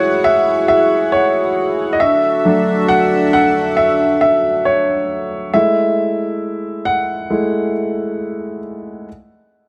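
Sensual and moody, this short R&B excerpt drifts at a slow 68 BPM in F# minor, moving from F#m9 to E9sus4 and back to F#m9. A warm, natural concert grand piano sits up front with deep bass as it carries the accompaniment for the full 9.1 seconds. A shimmering, retro pulse-width pad with chorus and a dark, soft-attack tone holds sustained chords beside it until 5.5 seconds, after which the piano continues alone in light reverb.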